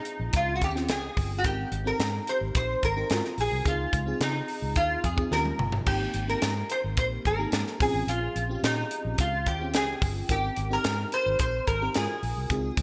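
A nasal, metallic resonator slide guitar, played with fingerpicks and treated with ensemble chorus, carries the melody up front in this glossy, urban clip of polished 1980s jazz-funk pop. Beneath it, an FM electric piano with a soft, dreamy pad layer supplies the harmony, while a crisp fusion drum kit with a high-tuned snare and gated reverb plays a straight 4/4 groove with a fill at 5.3 seconds. A dark, round, foam-muted fingered bass anchors the low end, all set in a lush hall reverb with bright 1980s-style digital production.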